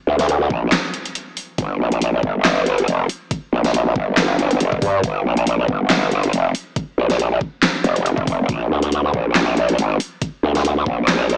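Heard through a small-speaker sound with light reverb and a digital ambience, this short cut from a longer heavy wobble dubstep track is aggressive and chaotic. It runs at 139 BPM in 4/4 with a half-time feel, swung 16ths and a G phrygian tonality. A growling, wobbling growl bass starts at 0.1 s, up front and bright, built from unison sine layers through a formant filter, with a fast attack, sustained notes, saturation, compression, chorus and overdrive across a low F1 to G2 range. The layered dubstep drum kit joins at 0.2 s with a huge snare, metallic hats and handclaps, its tape-tinged tone sitting up front. An overdriven electronic kick drum knocks in from 0.5 s. A brief break from 0.7 to 1.6 s interrupts the single section.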